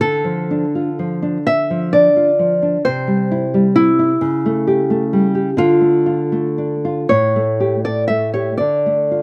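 A slow, rubato 6/8 lilt at about 38-45 BPM in dotted quarters carries this solemn, melancholic romantic duo in D minor, cut from a longer piece. One nylon-string guitar sings the fingerpicked melody in a dark, small tone between E4 and E5. A second nylon-string guitar, thumb-plucked and warm with a classical character, supports it from A2 to A4 through a Dm, C, A7/C# and A7 progression that settles back on Dm at 8.6 seconds. Both guitars sit up front in an outdoor recording touched with light reverb.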